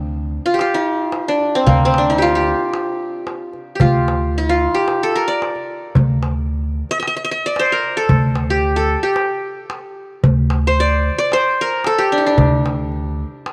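A bright-edged, plectrum-plucked qanun carries a longing, soulful melody up front in this Arabic maqam ensemble excerpt, over a woody, thumpy pizzicato upright bass and a clay-shelled darbuka with natural skin that joins at 0.5 seconds, all set in light reverb and small room ambience.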